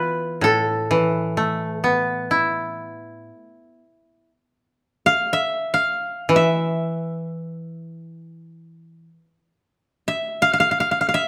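Japanese traditional chamber music in free time, meditative and still, set for two kotos played with fingerpicks, their woody, dry tone placed up front within a moderate recital-hall reverb. One koto carries the melody in a high register while the second supports it with a lower accompaniment that stops at 9.1 seconds. The melody koto then sounds alone until this fragment of a longer piece ends at 11.3 seconds, the opening passage having returned at 4.4 seconds.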